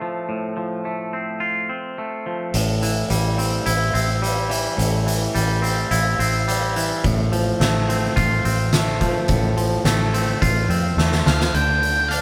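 Post-rock at 107 BPM, brooding and cathartic, where a twangy, clean electric guitar picks arpeggios alone over F/A before fingered, foam-muted bass and an oversized low-tuned drum kit with a boomy kick and fat, gritty snare enter at 2.5 seconds on Am7, all played live in a stone room with moderate reverb, until a drum fill begins at 11.0 seconds and a dark octave-fuzz lead guitar melody arrives during it at 11.3 seconds as this cut from a longer piece breaks off.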